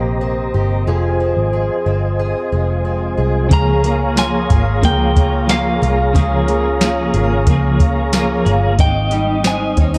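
Dark, warm production set in a moderate concert hall reverb gives this dream pop excerpt an ethereal, floating mood in a straight 4/4. It opens with a mellow, flute-like tonewheel organ holding sustained chords through chorus vibrato and lush chorus, while a fingerpicked twelve-string acoustic guitar spins shimmering, octave-doubled arpeggios through lush chorus and digital delay. Underneath, a vintage muted picked electric bass sits up front with a round, foam-muted tone as the harmony moves from Cm7 to Fm7. At 3.5 seconds the music opens onto a Db6 chord as two clean electric guitars enter: one carries a bright, twangy melody high up through digital delay, the other plays accompaniment with tremolo and ensemble chorus. A soft vintage rhythm box arrives at the same moment, its deep kick, crisp snare, metallic hats and tambourine pushed through overdrive. A glockenspiel struck with rubber mallets adds soft, bell-like, ringing touches in the background from 4.2 to 9.1 seconds, sent through digital delay.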